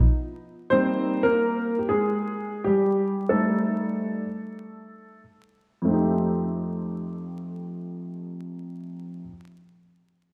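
Mellow, nocturnal hip hop at 93 BPM with a swung 16th-note feel, carried by a dark, boxy baby grand piano that enters at 0.7 seconds and sits up front with an intimate tone and audible action noise, filtered and touched with analog chorus as it moves through Cm7 and Gsus2 while a filter sweep runs across it until 5.9 seconds, then lands on F7, all set in a dreamy, reverb-soaked hall with vinyl crackle before the piano stops at 9.3 seconds.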